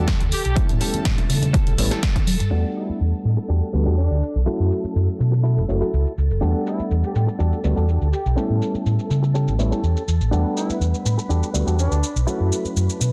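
A round, dark fingered electric bass sits up front with tube saturation, anchoring this nostalgic, groovy filtered disco house cut at 123 BPM in a straight 4/4, set in E dorian and moving through Em11, A7 and F#m7 chords. An overdriven reed electric piano plays the accompaniment through a combo amp, its barky, gritty tone shaded by phaser, while a swirling vintage string machine holds slow-attack sustained chords in the background with ensemble chorus. A bright, scooped, direct-recorded clean guitar picks a compressed riff, and a jazz-style horn section carries the melody with light vibrato, a soft attack, 12-bit sampler grit and digital delay. A layered, overdriven electronic kick punches through until 2.2 s, and very quiet tambourine and congas played with soft hands add acoustic sparkle until 2.5 s. The punchy analog drum machine's snare, hi-hat, shaker and crash run throughout, falling under a filter sweep from 2.5 s, and most parts pump to the sidechain beneath low-pass filtering in a dry, dense, heavily limited master.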